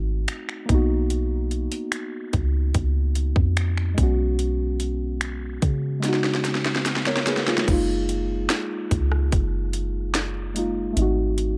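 Dreamy and romantic, this contemporary R&B passage is cut from a longer piece and moves in an unhurried 4/4 with a straight feel. Muted, felt-like synth keys carry the harmony in a dark, intimate tone, treated with chorus and colored by a noise layer and a filter sweep as they move through lush chords such as G#7b9, C#13sus4 and F#maj13. A soft 808-style bass sits beneath, deep and round with a sine-like body that strikes quickly and then decays. The trap drum kit enters at 0.3 s with a hard-clipped kick, sharp snare, metallic hi-hats, finger snaps, rim clicks and a crash cymbal, carrying a tape-warm, produced edge. A drum fill from 6.0 to 7.7 s leads into a new section at 7.7 s, and the close, dry mix keeps keys, bass and drums up front.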